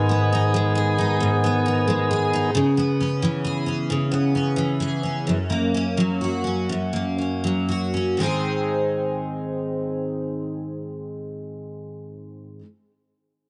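A full-bodied, double-tracked steel-string acoustic guitar opens this melancholic, dramatic pop fragment together with a lightly overdriven tonewheel organ holding sustained chords, its tone touched with vibrato and a subtle chorus. The organ drops away after 2.5 seconds, leaving the picked dreadnought guitar up front to carry the accompaniment through to 12.6 seconds. The music moves in a slow 6/8 at about 39 to 45 dotted-quarter beats per minute, and the pace slows between 2.5 and 8.2 seconds. In G# minor, the harmony travels from G#m through C#m7 and F# before arriving on a G# major chord at 8.2 seconds, where a new section begins. Light reverb and a small room ambience frame the parts of this cut from a longer piece, and the top end is gently rolled off.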